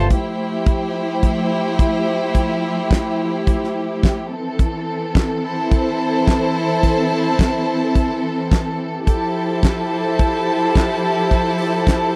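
A dry, close room sound in a 1970s studio style frames this glamorous, joyful disco excerpt at 107 BPM in straight 4/4, moving from Fmaj9 to C6 and back across its 12.2 seconds. Up front, a damped, acoustic drum kit pairs a fat snare and tight kick with hi-hat and handclaps, its top rolled off. A lush, smooth string section holds sustained bowed chords beneath a rich, focused violin section carrying a second line with vibrato.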